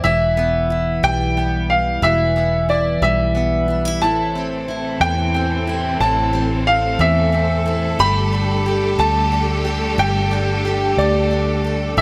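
Opening with a clear baby grand piano carrying the melody up front with a touch of delay, over a bright, double-tracked picked steel-string acoustic guitar with audible finger squeak and a dark, round, foam-muted fingered electric bass, this dramatic, aching six-eight pop ballad at 60 BPM moves through Em, Am and Gsus2 in a light studio reverb as a lush, bowed symphonic string section with vibrato enters at 4.0 seconds to sustain the chords through this 12-second cut from a longer piece.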